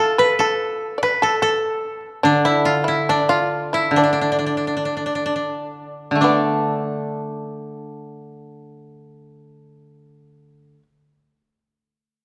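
A woody, up-front koto carries the melody of this meditative, solitary excerpt of Japanese chamber music in the D kumoi scale, played with fingerpicks in a free, rubato 2/4 at roughly 44 to 75 BPM. A bright, buzzing fretless shamisen, plectrum-plucked with a percussive edge, plays a second line throughout, and a mellow, dry second koto joins with a low accompaniment at 2.2 seconds as the pace slows until 6.2 seconds, where a new section begins. A moderate concert hall reverb gives the ensemble an open, resonant space.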